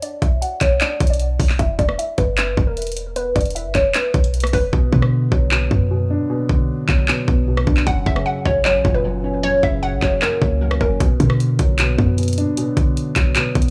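A hollow, detuned square-wave pluck carries the eerie melody up front, softened by chorus, a low-pass filter sweep and tape echo, over a trap beat at 153 BPM in a half-time feel in B harmonic minor. Overdriven electronic drums with a hard-clipped kick, bright hi-hats, handclaps and rim clicks sit alongside a clean, boomy sine 808 bass, while a dark, boxy grand piano enters at 4.7 seconds and the hats drop out until 11.0 seconds. The menacing Bm, Em and F# harmony is cloaked in echo-heavy digital ambience in this cut from a longer piece.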